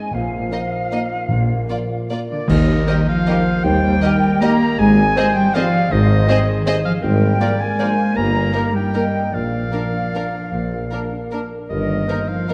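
A dark, warm production sits in a lush scoring-stage reverb, framing this sweeping, festive orchestral ballroom waltz in Eb major, moving in a rubato 3/4 at 144-172 BPM and cut from a longer piece. It opens with a background flute group on a second line, very quiet mellow French horn chords, and a ringing, thumb-plucked concert harp playing arpeggios. Bowed sul tasto strings soon gather: a clear, floating double bass section and a dark cello section carry the bass, an intimate violin section takes the melody over a second violin line in the background, and a very quiet, dark viola section fills in the accompaniment, while soft-mallet timpani with calf heads sound round and dry until 3.0 s. At 2.3 s a bright solo oboe adds a second line. At 2.5 s the band accents the shift to the second section as bright clash cymbals and concert bass drum strike, a mellow tuba joins the bass, and a distant, roomy clarinet adds another second line. 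From 2.9 s a mellow trumpet section offers soft-attack stabs in the background as the harmony moves through Abmaj7 and Bb7/Ab before settling on Eb/G.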